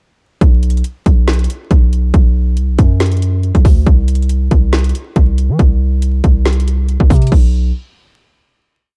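Dark and eerie, this short half-time trap piece sets a hard-clipped kick, woody snare, metallic hats with fast rolls and a crash up front against a distorted, aggressive 808-style bass whose long, sliding sub notes follow the kick from 0.4 seconds, all in a dry, dusky production flecked with vinyl crackle before a final note rings out from 7.3 to 9.0 seconds.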